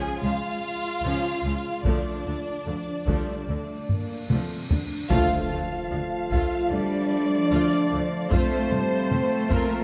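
Heard in a moderate concert-hall reverb, this heroic, relentless epic orchestral film-score excerpt in D minor at 74 BPM opens with a smooth violin section melody, a lush second violin line, focused violas, dark sustained French horn chords, and bowed cellos and woody double basses on the bass, before heavy-stick taiko drums enter at 1.9 seconds, a huge cymbal swell and impact arrives from 4.0 seconds, and a band accent at 5.1 seconds brings in a hollow, distant flute, background trombone chords, vintage woodwind section chords and round soft-mallet timpani.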